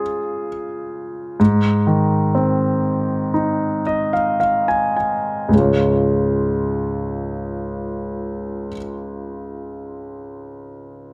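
In a straight 4/4 pulse between 51 and 69 BPM that slows over the first 5.5 seconds, this tender, emotional pop fragment in Db major is carried by a clear concert grand piano playing accompaniment from Db2 to Ab5. The harmony moves from Db to Ab at 1.4 seconds, and a piano fill arrives at 3.3 seconds before the harmony settles back on Db at 5.5 seconds to open the second section. The piano sounds intimate and up front, with deep bass, long sustain, audible action noise and a slapback echo, captured dry outdoors with little reverb.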